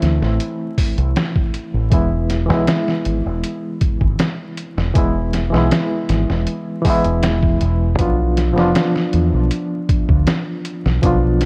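Trip hop with a cinematic, hypnotic pull, this 11.5-second fragment of a longer piece sets an overdriven, reedy electric piano with tremolo and tape echo against a dark, round dub bass with tube saturation. A muffled, compressed, pitched-down sampler-style kit with a thumpy kick and medium-tuned snare sits up front in a small room ambience, moving under the Am, E and Bdim chords. Light reverb and a worn cassette character, with vinyl crackle and warbly pitch drift, give the sound its aged feel.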